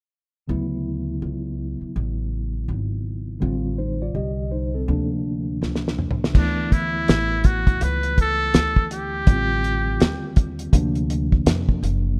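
Smooth and warm, this jazz-hop fragment from a longer piece sets a mellow tine electric piano over woody pizzicato upright bass from 0.5 seconds, with a cloth-damped, thuddy drum kit of dark cymbals, fat snare and tight kick arriving on a fill at 5.6 seconds, before a breathy, buzzy trumpet with a metal mute takes an intimate, whispered solo of scooped, vibrato-laden notes from 6.4 to 10.3 seconds, all in a rough home demo mix.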